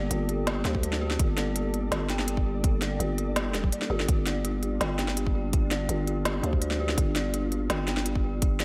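Heavy and spacious, this half-time drum and bass excerpt at 166 BPM sits on a G minor add-nine chord, with a growling, buzzy 808-style bass up front under a deep, moody pad of detuned sawtooth chords that pumps against the sidechain with vintage 12-bit grit in the background. An eerie, inharmonic FM bell warbles through chorused arpeggios and tape echo, while a very quiet, flickering granular texture glimmers beneath. Woody snare and crisp hats from a tape-warm kit enter at 0.1 seconds, joined at 0.7 seconds by a hard-clipped electronic kick, all under light reverb.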